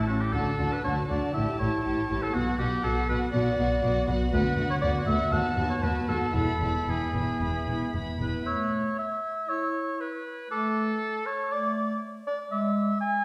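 Lively and graceful, this quick classical-period orchestral movement at 119 BPM moves with a rubato feel and settles into A major, tuned to A4 = 435 Hz. Veiled, con sordino strings open the excerpt: a chamber violin section carries the high melody while a lush studio violin section and a warm, roomy oboe add second lines over violas, with cellos and double basses on the bass, the strings stopping around 8.5 s. From there a dark solo clarinet and a mellow, airy silver flute in the background join the oboe, which sounds until 13.2 s, the whole ensemble heard from further back in a wet scoring-stage reverb.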